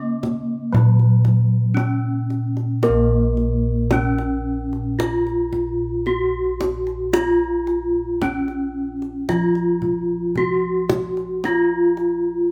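A straight, stately 4/4 pulse at 56 BPM carries this Javanese gamelan excerpt in Bb pelog, where an up-front bronze metallophone struck with a horn mallet sings the melody in a ringing, boxy tone whose paired tuning produces shimmering beats, round, mellow bossed gongs played with padded beaters hold the bass, and a tight kendang struck with hard hands adds percussion, the band captured live in one room with a wet large-studio reverb as the music moves into a new section at 2.8 seconds.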